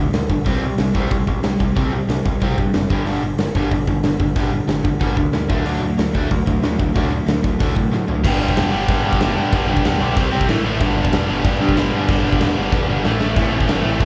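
Recorded as a band playing live in one room with light reverb, this upbeat, rebellious punk rock excerpt, cut from a longer piece, pairs a warm overdriven electric guitar riff with a tight, bright distorted guitar and a growling picked bass set back in the mix, all driven by a big, dark, up-front acoustic drum kit with a punchy kick, before a double-tracked, high-gain heavy guitar joins at 8.2 seconds and a drum fill arrives at 12.7 seconds.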